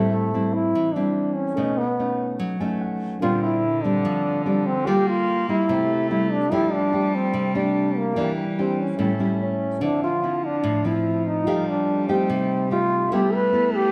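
A moderate recital-hall reverb gives this sophisticated, sunny bossa nova at 146 BPM a spacious church-like glow, with a punchy, forceful trombone up front playing the jazz-style solo melody in scooped notes over a thumb-plucked, classical nylon-string guitar. A very quiet grand piano with short sustain adds accompaniment and a brief fill at 2.4 seconds, and a single bowed cello enters at 3.2 seconds with a pure, floating sul tasto second line. The harmony moves through jazz chords like Bb69 and F69 before settling into D minor from 9.8 seconds in this warm excerpt.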